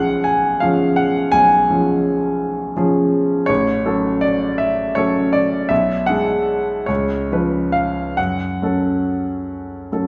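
In a 12/8 with a free, rubato pulse of about 45-57 BPM, this serene and nostalgic Romantic nocturne for solo grand piano unfolds in F# minor, its harmony moving from C#7 over B through F#m, G#m7b5 and C#7 before settling on F#m at 8.2 seconds. The piano sounds clear, intimate and up front, ranging from A1 to G#5, with the mechanical noise of its action audible. A wet recital-hall reverb surrounds it with natural resonance in this brief excerpt from a longer piece.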